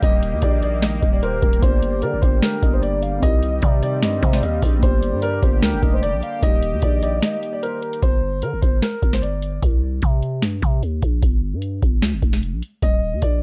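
Dark, warm digital ambience frames this hard-hitting, brooding trap passage, cut from a longer hip hop piece and moving in a half-time feel. Up front, a booming analog drum machine pairs a deep kick with a tonal snare and metallic hats, while a growling, buzzy 808-style bass with a saturated tone runs underneath throughout. A mellow grand piano with long sustain carries the melody through a low-pass filter and tape echo. Alongside it from the start sit a velvety synth lead with vibrato in the background and a sweeping, detuned pad holding bright, evolving chords. From 1.6 seconds, muted, felt-like synth keys add soft, warbling accompaniment. After a short break, the pad, lead and keys stop at 8.0 seconds, leaving piano, bass and drums; the piano then drops out before returning briefly at 12.8 seconds.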